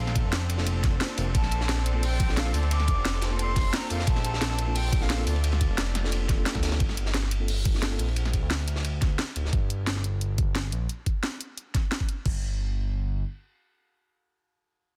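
Dreamy and lush, this liquid drum and bass excerpt from a longer piece opens straight into a drop over a Bbmaj7 chord. A pure, distant concert flute carries the melody with vibrato and tongued notes, trailed by delay, while a rich symphonic string section holds bowed chords with light vibrato, pumping under sidechain compression. Beneath them, a smooth synth bass built from detuned sawtooth and square waves sits up front with a fast attack and a moving notch. It sustains until 13.2 seconds, outlasting the other parts. A knocking, overdriven electronic kick leads the drums, layered with a drum and bass kit of cracking snare and bright hats, and a gritty, dark-cymballed breakbeat kit that stays in the background with its top rolled off. A mellow, clean tine electric piano adds delayed accompaniment from the background, the harmony shifts to Gm at 6.8 seconds, and the small-room sound is pressed into a dense, heavily limited master.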